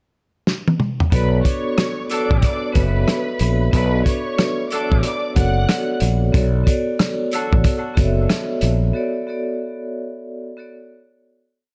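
A drum fill on a muffled, dry soul kit opens this dark, moody boom-bap hip-hop piece at 0.5 s. It leads into a hook in B minor at 92 BPM with a swung sixteenth feel, resting on a single Bm7 chord. From 1.1 s the kit settles into a hard kick and a backbeat snare layered with rim, with hi-hat, rim clicks and toms. Alongside it, an up-front, round fretless electric bass plays a deep looped line with chromatic approach notes. A bright, ringing vibraphone with medium hard mallets pushes spread chords with grace notes and slow motor vibrato, colored by cassette tape, while a distant, lush violin section carries a short looping melody doubled in octaves, touched with tape echo. A mellow, vintage saxophone section adds short stabs, also with tape echo, and jingly sleigh bells tick eighths in the background. By 8.9 s the drums, bass and bells have stopped, leaving the vibraphone alone through the break as the piece fades out in light reverb and small room ambience.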